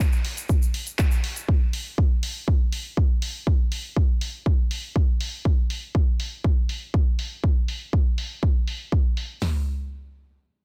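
Densely limited and digitally ambient, this driving, dramatic techno excerpt in straight 4/4 centres on an up-front electronic house kit with punchy kick and snare plus hi-hat and toms, layered with a second, quieter kit of handclaps and low-pass-filtered hats in small-room ambience, while a grainy, bright egg shaker sounds only until 1.5 seconds and the drums carry on to about 9.5 seconds.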